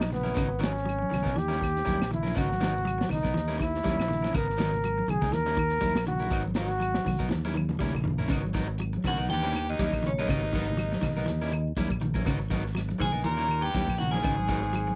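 A swung, crunchy breakbeat groove with a punchy kick, hard-hand congas, woody claves in the background and a fingered electric bass drives this hypnotic afrobeat excerpt, where a clear, up-front trombone solos over twangy, slightly broken-up guitar stabs with slapback echo and dark semi-hollow guitar arpeggios with tremolo until a drum fill at 7.3 seconds, after which a bright, ringing vibraphone takes the melody at 9.1 seconds, with a brilliant trumpet and a raspy baritone saxophone carrying second lines over the two-chord vamp, in a dry, close 1970s-style studio sound.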